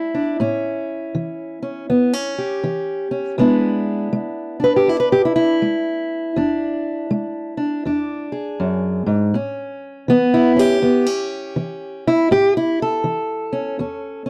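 Soulful and rollicking, this short cut from a longer acoustic country blues piece features a lone fingerpicked steel-string parlour guitar with a swung eighth-note feel, moving from A7 to E7 and back to A7 across its 14.3 seconds. The guitar sits up front with a dark, boxy tone and fresh strings, ranging from low E2 up to B4. The sound is dry and close in the manner of a 1970s studio recording, touched only by light reverb.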